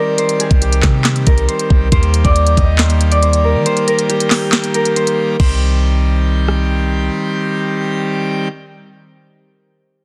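This hard-hitting, eerie trap cut runs at 138 BPM in 4/4 with a half-time feel, set in C minor and moving from C minor to E-flat before returning to C minor. A majestic full pipe organ holds sustained chords with brilliant mixtures and a romantic voicing, while a ringing acoustic concert harp carries the fingerpicked melody through a tape echo. The electronic drum kit sits up front with a knocking kick, sharp snare, crisp hi-hats, handclaps, rim clicks and crash cymbal, all roughened by vintage 12-bit sampler grit. A clean, sine-like 808-style bass, deep and boomy with a fast attack and dark decay, enters at 0.5 seconds and anchors the low end. A break arrives at 3.7 seconds before the next section, and the organ sustains alone until 8.5 seconds after the other parts drop away. Digital ambience surrounds the mix, and the dense, heavily limited modern master gives this excerpt from a longer piece a loud, compact punch.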